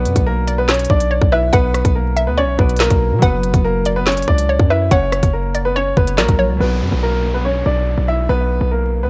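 Ominous and dark, this half-time drill hip hop cut at 142 BPM in B harmonic minor sets a clear, woody upright piano melody with audible action noise and tape echo over a hollow, detuned square-wave pluck treated with chorus, a ringing fingerpicked concert harp in the background, a punchy, heavy 808-style bass, and an up-front electronic drill kit of hard-clipped kick, woody snare, crisp hats, rim clicks and handclaps, until the drums drop out at 6.4 seconds and an electronic downlifter enters at 6.6 seconds, all captured in a dry, gritty mix laced with vinyl crackle.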